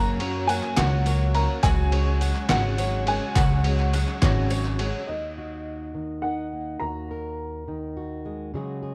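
Swaying in a straight 6/8 at 70 BPM counted in dotted quarters, this short indie folk excerpt in Eb minor carries a bittersweet, yearning mood as its arrangement builds. A trip hop sampler-style drum kit, pitched down and muffled with a thumpy kick, medium-tuned snare and ride cymbal, runs from 0.2 to 4.9 seconds, joined by a jingly tambourine and crisp, saturated group handclaps tucked into the background. Up front, a woody, growly pizzicato upright bass anchors the opening chords of Gb and Dbsus4, while a shimmering, octave-doubled twelve-string acoustic guitar with audible finger squeak, a bowl-back mandolin picking arpeggios with tape echo, a very quiet brilliant grand piano and a smooth tonewheel organ on slow rotary fill in the texture. A clear, slightly detuned upright piano with a worn, short-sustained tone carries the melody between Eb5 and Bb5 from the start until 8.2 seconds, colored by cassette tape and tape echo. 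At 5.1 seconds, the harmony settles on Ebm and the fuller band gives way to a full-bodied fingerpicked steel-string acoustic guitar with old strings, heard up front beneath the piano line, all captured as a home cassette recording with studio reverb.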